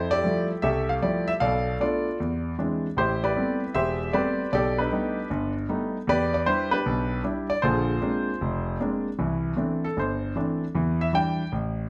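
Set in a moderate large-studio reverb, this swinging, sophisticated solo jazz excerpt at 154 BPM features an intimate, up-front concert grand piano with deep bass and audible action noise, moving through rich chords from Fmaj9 to Bm7b5 and B7alt before a new passage begins at 9.2 seconds on C69 and Em7.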